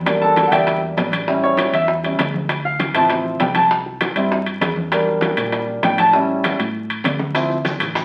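A woody, up-front upright piano takes the lead from the start over a dark, foam-muted electric bass, driving a fiery, danceable salsa excerpt cut from a longer piece. Close, round bongos, ringing metal-shell timbales and thin-skinned congas in the background fill out the groove, with a drum fill at 6.4 seconds and grainy maracas slipping in at 7.4 seconds. The whole take sounds like a very old 78 rpm record, wrapped in vinyl crackle and a wet studio reverb.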